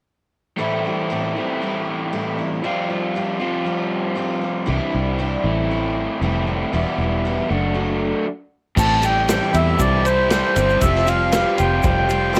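A folk rock and heartland rock excerpt with a reflective, dusty mood, set in a straight 4/4 feel and captured as a home recording on cassette with light reverb. It opens at 0.6 seconds with a shimmering, octave-doubled twelve-string acoustic guitar picking the accompaniment beside a raw, double-tracked garage guitar whose overdriven riff sits up front, both carrying a cassette tape colour. A fingered electric bass, round and foam-muted, joins at 4.7 seconds, and a brief stop just before 8.8 seconds clears the way for the fuller band. From there a reedy accordion with slow beating takes the melody up front, while a brilliant, woody upright piano adds very quiet accompaniment and closes with a short fill. A vintage drum kit with dark cymbals, a medium-tuned snare and a punchy kick drives the section from a small room, and a grainy egg shaker ticks close and dry in the background as the chords Am7 and Fsus2 pass beneath.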